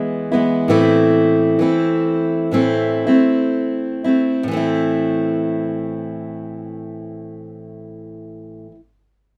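A bright, up-front picked steel-string acoustic guitar with fresh strings carries this haunting, intimate folk fragment in A minor, moving from E to Am at a slow 59-69 BPM with a gentle swing on the eighths, easing back in pace over the first 4.5 seconds before a new passage begins, all set in moderate studio reverb within a rough home-demo mix marked by a faint mains hum.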